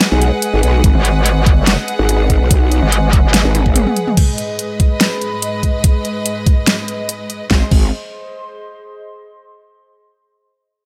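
Heavy wobble dubstep at 144 BPM in G# minor, this chaotic, swung half-time clip opens straight into a drop. A growling, detuned growl bass and a bright, metallic FM wobble bass sit up front with saturated chorus and overdrive, while an overdriven electronic kick knocks in from 0.8 seconds alongside a dubstep drum kit with a huge snare, hi-hat, toms and crash. A clear studio string section holds bowed, biting chords with light vibrato, pumping against the sidechain, and a warbly, lo-fi tape-like pad adds nostalgic, wave-folded texture with its own reverb and chorus. A drum fill closes the drop, the kick briefly drops out, and from 4.2 seconds the track fades out on the ambient pad before the growl bass returns at 7.5 seconds on a G# major chord. The mix is dry and loud.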